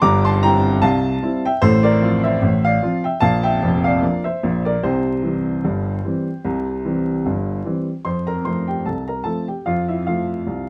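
A dark, softly reverberant production with vinyl crackle frames this short cut from a longer ragtime piano piece. A lone upright piano carries everything, its woody, natural tone sitting up front and spanning from F1 down low to D6 up high. The mood is lively and playful, moving at 75 BPM in 2/4 with a gentle swing on the sixteenth notes, in F major. The harmony steps through C7 over G, F over A, Bb and C before arriving on F at 8.0 seconds, where a new section begins. The recording ends at 10.7 seconds, cut off partway through the piece.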